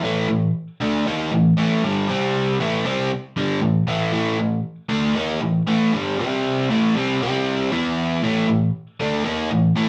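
Set in a wet studio reverb with a live-in-the-room feel, this raw, swaggering rock fragment features a lone bright, crunchy electric guitar, overdriven, picked and double-tracked up front, moving through A, C and E power chords and A minor across its roughly 10 seconds.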